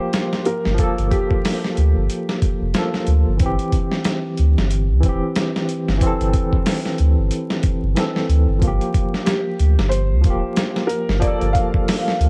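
A dark production with a haze of vinyl crackle and digital ambience frames this brooding, cinematic trip hop excerpt in G dorian, moving at 92 BPM in 4/4 with a swung sixteenth-note feel. A bright, barky tine electric piano carries the accompaniment throughout, its clean, direct tone colored by tremolo and tape echo. A felt-muted upright piano, soft, boxy and intimate, voices the melody in two brief phrases, one at the start and another from 9.3 seconds, trailed by tape echo. The sampler-style drum kit is gritty and compressed, overdriven and re-recorded in a small room, with a thumpy kick, medium-tuned snare and hi-hat sitting up front. A deep, round sine sub bass enters at 0.7 seconds and holds the low end with sustained notes as the harmony moves from Gm7 to C and back to Gm7.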